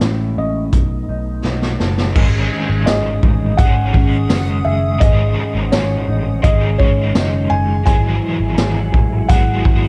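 A raw garage drum kit sits up front with a punchy kick, gritty sampler-worn saturation and a rolled-off top, driving this dreamy, floating dream pop excerpt at 84 BPM in 4/4, with a fill from 1.4 to 2.2 seconds. Around it a felt-muted upright piano carries a soft, intimate melody through tape echo, a dark, round muted bass anchors the low end, a mellow guitar plays arpeggios through chorus and echo, and a flute-like tonewheel organ with key click holds chords in the background through a fast rotary speaker. A crunchy overdriven guitar with tremolo enters at 2.1 seconds as the chords move from Amaj7 and B7 to G#sus4, and a reversed, granular swelling texture glimmers faintly from 3.1 seconds, all under a light reverb and cassette tape tone.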